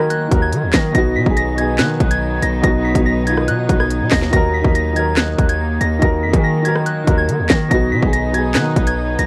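A drill kit sits up front, its hard-clipped kick, sharp snare, crisp hats, handclaps and rim clicks driving a dark, cold hip hop groove in a half-time feel, while a distorted, saturated 808-style bass adds heavy, aggressive low end. Above them, a soft FM synth bell carries a pure, gentle melody through chorus and tape echo, over a dark, vintage-toned grand piano and a reedy, bowed studio string section holding sustained chords. The whole excerpt is dry and worn, with the warbly pitch drift of old cassette tape.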